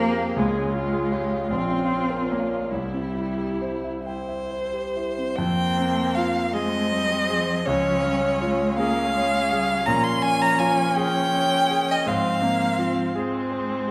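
Bathed in the reverb of a recital hall, this elegiac, solemn fragment of a slow romantic piano-quartet movement in F minor drifts in rubato 6/8 at 44-57 BPM, with a single rich, focused violin singing the melody up front with vibrato until 13.2 s, a polished grand piano accompanying close by, and a smooth, even viola and an expressive, warm cello with portamento sounding more distant beneath it.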